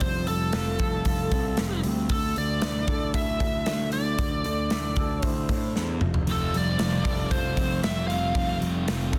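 A restless, anthemic stretch of quiet-loud alternative rock at 115 BPM in F major opens with a biting, overdriven lead guitar carrying the melody up front with tape echo. Behind it, twangy, slightly broken-up arpeggios from a guitar through a small old amp sit in the background with spring reverb and tape echo, while a punchy, fuzzed picked bass and a big acoustic drum kit with a medium-tuned snare hold a straight 4/4 as the chords move from Fadd9 to Dsus2 and back. After a drum fill at 5.7 seconds, a thick, distorted fuzz guitar riff joins at 6.3 seconds, and the lead stops at 8.6 seconds in a dense, heavily limited mix with light small-room ambience.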